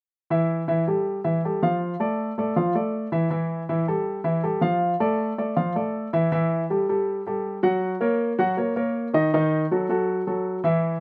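A straight, driving 4/4 pulse carries this passionate Latin passage, cut from a longer piece, played by a solo baby grand piano that sits up front with a warm tone and light reverb in a dry outdoor setting. The piano spans its middle register, moving between A5 and Dm chords before shifting at 6.3 seconds to a new section that turns to F# and then D#dim, ending at 11.0 seconds.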